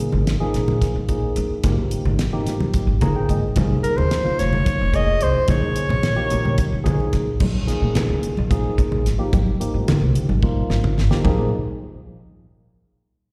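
In a straight 7/8 groove, this funky, nocturnal slice of electric jazz fusion sets a woody, growly pizzicato upright bass and a dry, fat-snared 70s drum kit beneath bright congas with slapback echo and a clean tine electric piano with chorus and slapback echo, while a mellow soprano saxophone with light vibrato and its own slapback echo takes a brief up-front solo from 3.8 to 6.8 seconds before a drum fill at 10.4 seconds, the performance heard as a live gig through the venue's PA with recital-hall reverb.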